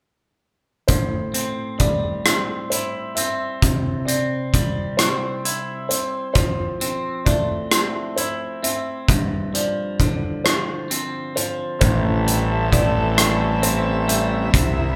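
Brooding and melancholic, this slow post-rock passage in A minor moves at 44 BPM in a straight 6/8, where a felt-muted upright piano with soft, audible action noise and a clean, twangy electric guitar bathed in spring reverb play arpeggios over Am7, C, Fmaj7 and G7sus4 while a big, up-front rock drum kit with a punchy kick, hi-hat and rim click drives alongside them, until at 11.8 s a round, fuzz-overdriven fingered electric bass and an intimate chamber string section playing bowed sul tasto chords with light vibrato join as the band returns to Am7, all captured live in one large studio room with moderate reverb.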